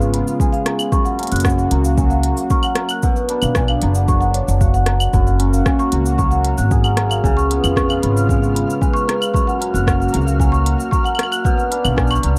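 Folktronica with a pastoral glow, this excerpt pairs a shimmering, hammered cimbalom playing arpeggios with a mellow soft-mallet marimba second line carrying digital delay, a smooth, warbling vintage analog pad holding chorused chords, and a woody, growly pizzicato upright bass set up front, all over a soft overdriven electronic kick and an overdriven electronic kit of claves, hi-hat, rim click and shaker, while a faint flickering granular texture drifts into the background at 6.1 seconds inside a dark, warm digital ambience.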